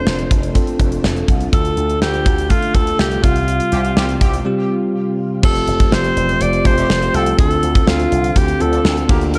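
A forceful, up-front alto saxophone with scooped notes, vibrato and a touch of delay opens this romantic, nostalgic 1980s-style pop piece, over bell-like tine electric piano and a very quiet, vintage organ-string pad with ensemble chorus. A punchy slap bass through an envelope filter joins with a polished, gated drum kit that has bright cymbals and a big-room sound, and a distant, roomy horn section adds loose stabs with delay from 3.7 s. The band hits accents leading into a short break at 4.5 s before a new section begins at 5.4 s, all set in a dark production with light small-room reverb.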